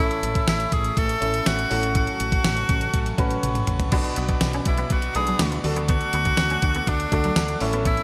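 An urgent, dramatic 1980s-style pop excerpt at 122 BPM opens with an edgy, forceful tenor saxophone carrying the melody up front with vibrato and delay over clear grand piano, a woody fretless bass, a very quiet crunchy overdriven guitar and a chiffy chamber organ holding sustained chords in the background, as a thumpy, sampler-style digital drum machine with a fat snare drives from 0.1 s, fires a fill at 3.4 s, and a twangy clean electric guitar riff with ensemble chorus joins at 3.9 s across A, F#m/A, Bm and D, all in a lush hall and bright digital production.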